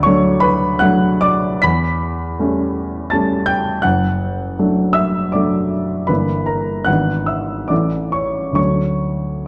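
Romantic classical character piece for solo piano, a hopeful, lyrical excerpt in D major and 3/4 that moves with rubato between 66 and 84 BPM. The baby grand sounds warm, present and up front across a span from F#1 to B6, set in a dark production with moderate recital hall reverb, while the harmony travels from D through A7/E, D/F#, Em7b5/G and E7/G# to A before settling back on D at 8.6 seconds.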